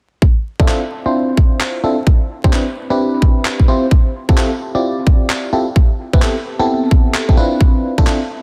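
Glassy, bell-like FM electric piano stabs, treated with chorus, phaser, dub echo and a filter sweep, move through Dm9, Cmaj9, Fmaj7 and Am9 over a tight, layered electronic kick and gritty, compressed handclaps in this bouncy, soulful 130 BPM two-step UK garage excerpt with swung 16ths, light reverb, vinyl crackle and a dense, heavily limited master.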